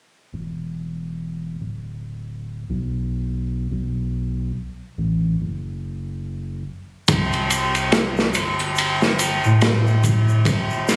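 Trip hop with a brooding, dark mood and a swung sixteenth-note feel, cut from a longer piece. A soft dub sub bass opens at 0.3 seconds, deep and round with a fast attack and sustained notes, sitting up front on its own. At 7.1 seconds a crunchy breakbeat drum kit arrives with kick drum, ride cymbal and snare drum, its punchy kick, medium-tuned snare and dark cymbals sounding saturated and gritty with a rolled-off top. Alongside it, egg shaker, triangle and group handclap sit close and dry in the background. The recording has the sound of a phone capturing the room, with club reverb and compression.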